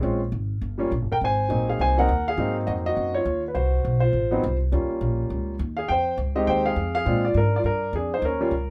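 A brisk swing at 205 BPM in 4/4 drives this playful jazz piano trio excerpt, tuned slightly flat to A4 = 437 Hz. A smooth, vintage upright piano with long sustain carries the melody up front, while a dark, woody pizzicato upright bass holds the low end, also up front, both playing throughout the 8.7 seconds. Under light reverb, the harmony moves from Bbm7 through Ab7 and Am6 to Fm7 and Bb7 before the clip cuts off.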